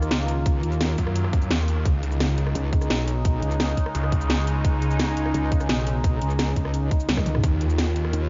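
A snarling, detuned saw bass growls up front from 1.0 s, heavily distorted and pumping against the beat, in this tense, futuristic excerpt of dark technical drum and bass at 172 BPM. Alongside it a metallic FM wobble bass churns with chorus, while a tight, overdriven electronic kick enters at 0.5 s alongside a kit of cracking snare, bright hats, rim clicks, shaker and toms in a small room, with a drum fill at 7.1 s. A bright, wave-folded pad sweeps through sustained chords from Ebm7 to Db5 and Eb5, shimmering with chorus and phaser under light digital reverb.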